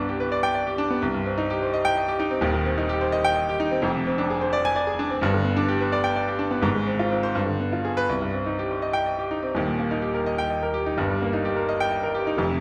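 Swaying in 6/8 at 85 dotted-quarter beats per minute with a free, rubato feel, this passionate, stormy classical piano study is a fragment cut from a longer piece. A solo baby grand, clear, natural and up front, ranges from Eb1 to Ab5 through restless C minor harmony before turning to Eb major at 9.6 s. The playing rings in a wet recital hall reverb.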